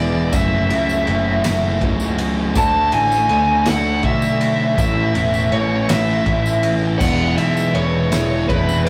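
A rough rehearsal-room recording with a wet studio reverb opens this short excerpt of wistful, jangly indie rock, moving in a slow 6/8 at 54 BPM in A major. Up front, a bright overdriven electric guitar carries the melody between B4 and A5, set against a thick, dark fuzz guitar riff with distortion. Beneath them, a second guitar through a small old amp adds a slightly broken-up, lo-fi riff at a very low level, while a deep, detuned analog pad with chorus holds moody sustained chords far in the background. A modern picked electric bass sounds bright and direct in the low register. From 0.3 seconds a loose acoustic drum kit with a fat snare, boomy kick and dark cymbals enters alongside a jingly tambourine, as the chords pass from F#m7 through Dmaj7 and Amaj7 to E7sus4.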